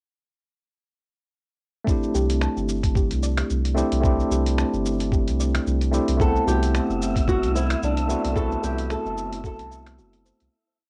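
Relaxed sunset chillout in A dorian at 111 BPM with a swung 16th feel, where a clean tine electric piano with medium tremolo enters at 1.8 seconds with held rootless chords and syncopated pushes, joined by a gritty sampler-style kit of finger snaps, hi-hat and shaker, a thumpy electronic kick, a round, deep analog bass in a dotted rhythm and a soft pluck arpeggio washed in lush chorus, before a woody, fingerpicked flamenco guitar with old strings brings song-like motifs at 6.2 seconds, followed at 6.7 seconds by an airy, breathy wind-like texture on a held high note, with cassette-tape grit on most parts and a fade-out from 7.6 seconds.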